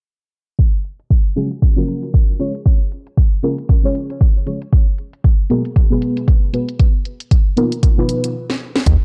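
A swung 116 BPM deep house groove in 4/4 opens at 0.6 seconds, with an overdriven electronic kick, deep and up front, driving under a house drum kit whose cracking snare and hi-hat carry the grit of a large room, while a filter sweep runs through this hypnotic, deep passage cut from a longer piece. Soft, dark chord stabs with a sub octave pump against the beat through chorus, phaser and analog delay, moving from Dbadd11 through Bbm7 and Abm9 to Bmaj7#11 before a stop and a drum fill. A rubbery, nasal square bass on Eb2 enters only at 8.9 seconds, all within a dry, gritty hardware sound and digital ambience.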